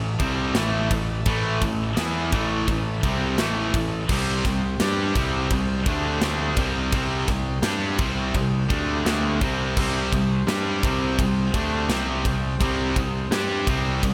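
Up front, a tight, polished metal drum kit with bright cymbals and a tight kick crashes in at 0.2 s to drive this heavy, relentless metal passage, where two high-gain distorted guitars (one set back in the mix), a very quiet double-tracked fuzz guitar and a punchy picked bass grind out the riff over A minor shifting to a C power chord at 4.1 s, while a very quiet, brilliant baroque pipe organ plenum holds sustained chords in a small room.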